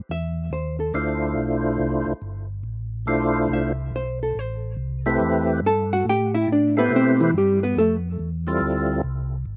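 A swung 4/4 groove at 141 BPM sets up this soulful, late-night soul jazz organ trio fragment in A minor. A mellow tonewheel organ holds down the bass from the start, its round, dark, clean tone shaded by chorus vibrato and a slow rotary speaker. An electric hollow-body jazz guitar, played with the fingers and sounding clean and shadowy, carries a solo through the passage before dropping out at 8.0 seconds. At 0.9 seconds a percussive tonewheel organ enters with the melody, fat and lightly overdriven, with second-harmonic percussion, audible key click, chorus vibrato and a slow rotary swirl. The harmony moves from Am through Dm9 and Am9 to Fmaj7. All three parts sit up front in a dry, open-air sound with little reverb.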